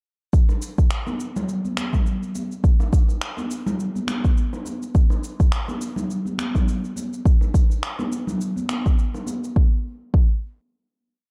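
A swung 104 BPM groove in 4/4 drives this earthy, hypnotic downtempo piece: a deep, tape-saturated electronic kick drum sits up front, overdriven electronic shaker and finger snaps add a roomy layered texture, and bright, distant bongos and congas colour the dark, lightly reverberant mix before the groove gives way at 9.6 seconds to a final hit that rings until 11.3 seconds.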